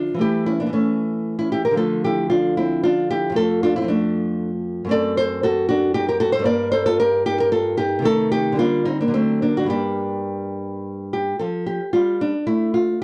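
A dark, boxy nylon-string guitar, fingerpicked up front in a dry, close 1970s-style studio sound with a small room's reverb, plays a grave yet flowing baroque-style classical dance alone in an elastic, rubato three-beat lilt, its chords turning through moody minor harmony before this short fragment of a longer piece settles on a lush closing chord at 11.4 seconds.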